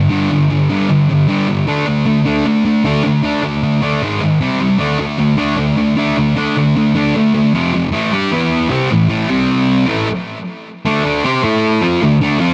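A thick, double-tracked fuzz guitar plays alone and up front, its bright, distorted picked tone carrying a digital delay through a raw, swaggering rock passage at 154 BPM in a straight 4/4. Cut from a longer piece, it moves through a run of power chords from G5 through D5, G#5 and C5 before shifting at 7.9 seconds into a second section built around A5, E5 and D5. A light reverb gives the guitar a touch of space.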